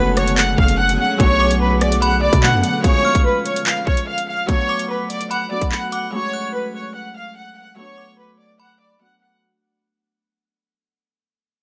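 Tense and dark, this drill excerpt runs at 146 BPM in 4/4 with a half-time feel, moving through F#madd9, Bm7 and C# chords. A studio violin section carries the melody up front, its bowed ensemble tone reedy with a gut-string, period-style character, light vibrato and a smooth top. Beneath it, a bright, thumb-plucked Celtic harp rings out the accompaniment, while a metallic FM bell with chorus and analog delay traces an inharmonic second line in the background. For the opening 2.8 seconds, a blurred, evolving granular pad holds sustained chords in its own reverb, and a punchy, saturated 808-style bass hits heavy with a noise layer before dropping out at 2.6 seconds. The electronic drill kit sits up front with a hard-clipped kick, metallic hats, handclaps and rim clicks, playing from 0.2 to 6.0 seconds, all set in a dry, gritty digital ambience as the piece fades out from 2.8 seconds onward.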